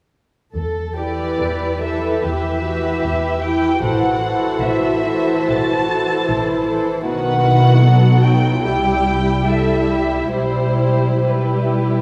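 A rich double bass section opens the recording at 0.5 s, bowed sul tasto with a soft attack, a pure, smooth top and an up-front, floating presence. A dark cello section follows moments later, intimate and close yet sitting in the background with light vibrato. At 1.0 s a woody viola section with vibrato joins a distant, lush first violin section carrying the melody, while a chamber-sized second violin section plays a close second line with light vibrato and a gentle onset. This is a slow, romantic orchestral movement, yearning and elegiac, its pulse stretching and giving through rubato. The strings are heard from further back in a scoring stage, whose wet reverb adds a lingering bloom, and this passage, cut from a longer piece, carries every part through to 12.0 s.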